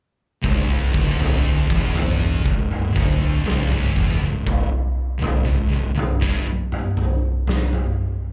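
An oversized, low-tuned acoustic drum kit sits up front in this ominous, brooding stoner and doom metal excerpt, its boomy kick, fat snare and toms sounding gritty and saturated in a big, pumping room, while two thick, dark fuzz guitars pick a heavy riff with slapback echo, one of them set back in the mix, over a round, punchy fingered electric bass with overdrive in the background, all heard as a live gig through the venue's PA with light club reverb, and the drums carry on alone after the guitars and bass stop at about 6.5 seconds.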